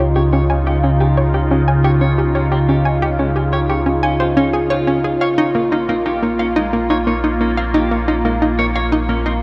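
Drenched in a long cathedral reverb with a cassette-tape character, this luminous, expansive excerpt of ambient, sequencer-driven space music moves at 89 BPM in a straight 4/4 feel in Db lydian, shifting from Dbadd9 to Bbm at 5.2 seconds. An up-front, swirling pad of detuned sawtooths with phaser and chorus holds sustained chords over a round, dark sawtooth-and-sine bass touched with ring modulation. Above them, a hollow, bouncy, wave-folded square pluck riffs through chorus and delay, while a clean, picked electric guitar fades in with delayed arpeggios from 0.2 seconds.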